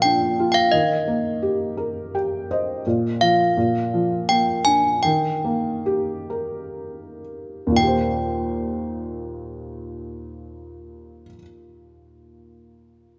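Dark and softly reverberant as if in a recital hall, this tender lullaby excerpt in Eb major sways in a rubato 3/4 between 55 and 87 BPM, slowing down from 2.8 to 7.8 seconds, with clanky, slightly out-of-tune desk bells ringing the melody up front until 11.3 seconds over a mellow, intimate felt-muted upright piano that adds a fill at 1.8 seconds and plays on alone until 13.2 seconds.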